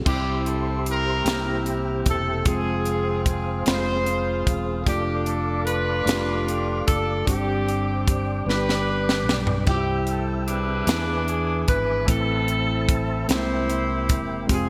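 A mellow tine electric piano, a soft, flute-like tonewheel organ turning through a slow rotary speaker with chorus vibrato, and a round, dark fingered electric bass open this slow, soulful gospel passage in C major at 50 BPM in 6/8, soon joined by an up-front horn section carrying the hopeful melody with light vibrato and a touch of delay. A polished fusion drum kit with a high-tuned snare, punchy kick and gated reverb sits forward in the mix, breaking into a fill between 8.5 and 9.7 seconds as the harmony settles on G after Gsus4 and then resolves back home to C. The bright 1980s-style digital production sets everything in a lush hall reverb, and the harmony colours the progression with Fm, E7 and a closing C7b13 before this fragment of a longer piece cuts off.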